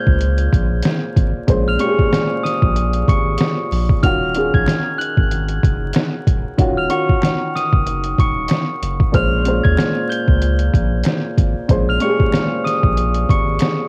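A dark, moody boom-bap hip-hop excerpt at 94 BPM opens on a worn, woody upright piano with audible action noise and a bell-like glockenspiel struck with soft plastic mallets, both carrying cassette-tape colour over Bbm9 and Ebm9 chords, as a deep, round dub sub bass and a muffled, pitched-down sampler-style drum kit with a thumpy kick and swung sixteenths join at 0.1 seconds, a dry finger snap slips in at 4.7 seconds, and the whole home-cassette recording sits nearly reverb-free beneath a layer of vinyl crackle.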